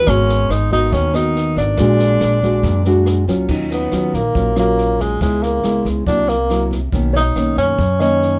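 A breathy tenor saxophone carries the melody in this melancholic, wistful bossa nova fragment, its mellow subtone shaded with vibrato and scooped notes in a jazz solo style that sits up front. Close beside it, a thumb-plucked nylon-string guitar in a classical manner supplies the accompaniment, while an upright bass on steel strings gives woody pizzicato support. A compact cocktail drum kit keeps a straight feel with rim clicks, a high-tuned snare, a punchy kick and dark cymbals, all captured dry and natural. At 3.5 s a very quiet grand piano joins with warm, intimate, short-sustained accompaniment, its action noise audible, as the harmony moves from Ebm9 through C7#11 to Bmaj9. The production is dark and warm, with little reverb.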